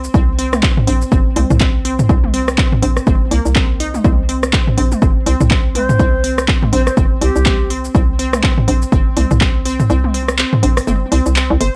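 A hollow, knocking FM bass and a clicky minimal drum kit of cabasa, handclaps and hi-hat open this cool, hypnotic minimal techno excerpt at 123 BPM, swung on the sixteenths. An up-front, punchy analog kick arrives almost at once and anchors the groove until 9.5 seconds. Alongside it, a squelchy, resonant blip pluck with a detuned sawtooth edge carries the riff, treated with chorus and tape echo and pumping along with the bass. A layered garage kit of rim clicks and toms, overdriven and echoed, adds gritty percussion. Between 5.8 and 7.7 seconds a bright, airy baroque flute slips in with a brief tongued phrase, its vibrato slightly unsteady. The whole track has a dry, hardware-made cassette character with light reverb.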